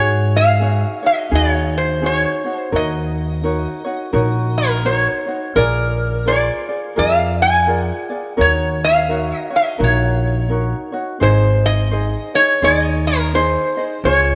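Languid and dreamy, this Hawaiian excerpt drifts at 85 BPM with a lazy swing, as a metallic, nasal resonator slide guitar played with fingerpicks carries the melody up front over a light, thumb-plucked ukulele and a woody, thumpy pizzicato upright bass, all bathed in a moderate echo-chamber reverb as the chords move from Ab7sus4 through Ebm7 and Bb7 to settle on Ab.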